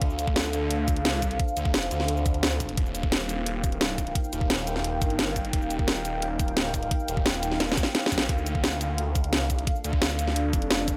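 A driving straight 4/4 pulse at 174 BPM anchors this dark, aggressive excerpt of technical drum and bass in D phrygian, with a knocking, layered electronic kick and a produced kit of cracking snare, hi-hat and cabasa sitting up front. Beneath them a thick, swirling detuned saw bass growls low in the register, saturated with overdrive and colored by a phaser, its sustained notes pumping under sidechain compression. A deep, moody ambient pad holds slow-attack chords higher up, thickened by chorus and its own reverb and likewise pumping under sidechain. The harmony moves from D minor to E-flat at 2.8 seconds, then a drum fill at 7.6 seconds leads back to D minor at 8.3 seconds. Light digital ambience gives the whole a close, shadowy space.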